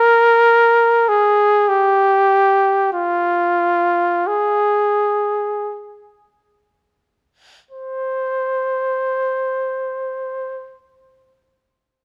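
Yearning and lonely, this classical passage for unaccompanied trumpet unfolds in free time, slowing over its first 7.7 seconds before a second section begins. The solo trumpet sits up front with a warm tone, soft attack and light vibrato, singing between F4 and C5 until it stops at 10.8 seconds. Close, detailed microphones and light reverb frame this fragment, cut from a longer piece.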